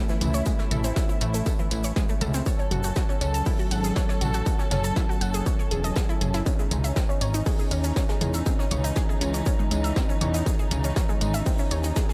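Dark, woody bowed strings holding sustained chords and a lush, wave-folded unison pluck spinning delayed arpeggios open this cinematic, hypnotic melodic techno excerpt in C# harmonic minor at 120 BPM, soon joined by a background brush kit with a high-tuned snare, a grainy egg shaker, a fat, detuned sawtooth bass up front, a tape-toned analog drum machine on hats and toms, and from 0.5 seconds a distorted electronic kick, with sidechain pumping on the strings, pluck, bass and brush kit over A, F#m and C#madd9 chords in a small room ambience.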